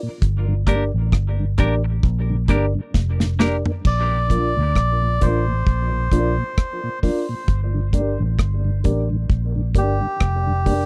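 A slow 66 BPM groove in 4/4, swung on the 16ths, anchors this laid-back, spacious dub reggae fragment in Bb major: an acoustic kit with tight kick, medium-tuned snare, rim click, hi-hat, toms and crash sits up front beside a dark, round, punchy foam-muted fingered bass. Behind them, a mellow tonewheel organ turns through a slow rotary speaker with chorus vibrato and tape echo, while reedy electric piano stabs carry tremolo and tape echo. During the opening break, a bright, scooped clean electric guitar with warbly pitch drift adds echoing accompaniment, and a drum fill leads to 3.9 seconds, where a breathy, nasal melodica takes the melody over Bb and then Gm in a dry, close 1970s-style studio sound.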